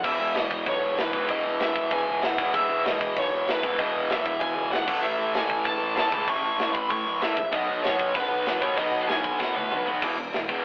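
A bright, overdriven, double-tracked rhythm guitar sits up front, grinding out a sludgy low riff over E5, A and B chords in this rowdy, rebellious punk rock excerpt, while a dark, high-gain lead guitar carries a distorted, picked melody up high until 9.8 seconds. Underneath, a growly fuzz bass lurks in the background, and a tight, mid-forward acoustic kit with a medium-tuned snare and a rolled-off top drives the straight beat, rolling into a drum fill from 9.4 to 10.0 seconds. The whole thing has a rough rehearsal-room, telephone-like sound with a moderate touch of studio reverb.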